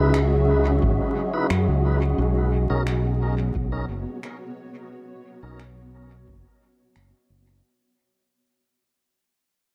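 A fingered electric bass, up front with tube saturation, anchors this meditative, deep ambient dub fragment at 88 BPM, moving from C#m7 to Bmaj7 beneath a blurred, detuned granular cloud pad and an airy, breathy wind-like noise texture. A lightly overdriven tonewheel organ with key click and fast rotary speaker plays dub-echoed stabs under a filter sweep until 5.6 seconds, while tape-warm electronic finger snaps with dub echo and a deep analog kick drum entering at 0.8 seconds keep a straight 4/4 pulse. The dark production carries light digital ambience and vinyl crackle, and the whole fades out across its length, cut from a longer piece.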